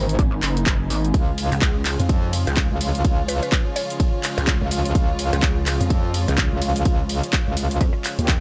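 Bass house with a bouncy, swaggering 16th-note swing, built on a punchy, tape-warm kick and a house kit of handclaps, hi-hat, ride and shaker, with a metallic, aggressive FM wobble bass and a detuned, overdriven pluck wobble bass pumping up front over dark sul tasto strings and a cloudy granular pad, while a woody, mallet-like synth pluck with tape echo appears briefly at 3.3 seconds.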